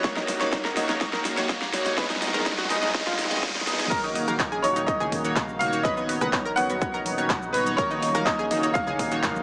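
Expansive and bittersweet, this progressive house cut in Eb minor moves at 124 BPM, opening with a build-up where a background riser and a drum fill from the big-room kit, with its huge snare, metallic hats, claps, shaker and crash, ride over a punchy electronic kick, a very quiet rumbling detuned saw bass and a soft, smooth analog pad. Glossy chorused polysynth stabs sit up front while a round analog pluck spins delayed arpeggios in the background, both pumping against the kick. At the drop at 3.9 seconds a brilliant, worn baby grand piano takes the melody with short sustain and digital delay, soft-handed congas enter quietly at 4.3 seconds, and the whole mix carries a moderate room reverb and a thin, small-speaker sound.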